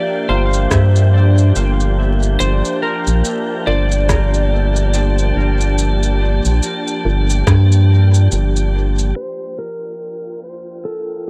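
Ambient dub at 71 BPM in G minor with a swung, spacious and meditative feel, this excerpt rests on a Gm7 chord, where a dark, slightly broken-up electric slide guitar carries the melody through dub echo over a smooth, detuned analog pad with chorus, a very quiet muted chord stab, an airy wind-like noise texture, a round, deep analog bass up front from 0.3 seconds, a small-room electronic shaker and rim click, and a tight, overdriven kick in the background, with little room reverb and the whole mix dressed in vinyl crackle and a low-pass filter, before a filter sweep on the pad colours the final stretch from 9.2 seconds.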